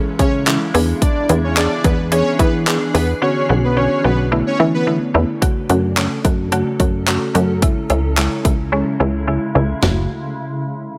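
Dance-pop at 109 BPM in F# minor with a driving, bittersweet mood, this excerpt sets a punchy electronic pop drum kit of handclaps, hi-hat, kick, snare and toms and a funky, wave-folded analog bass up front, under a woody, mallet-like FM pluck, a cloudy granular pad in the background and a smooth soft supersaw melody with tape echo that sings from 0.2 to 4.9 seconds. The pitched parts all pump with the sidechain through chords moving from C#m and E7 to Bmadd9 and F#m, with a silent gap breaking the drop at 3.2 seconds and another falling at 8.7 seconds.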